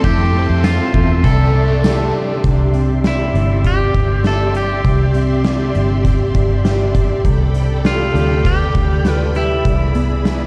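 A blissful, floating stretch of dream pop opens with a twangy, slightly broken-up electric guitar melody trailing digital delay and shimmer reverb, set over dark, clean fingered arpeggios on a mellow electric guitar and the soft-attack, warbling sawtooth chords of a vintage string machine playing violas through ensemble chorus. A bright, double-tracked overdriven guitar glimmers in the background with tremolo and lush chorus until 3.0 s, while a round, foam-muted vintage bass and an oversized, low-tuned, gritty and saturated kit with a punchy kick, medium-tuned snare, hi-hat and tambourine anchor the groove. The chords drift from Fmaj7 and C69 into a long Cadd9 and Gadd9/C passage before landing on E7, all within a dark production wrapped in moderate, lush hall reverb.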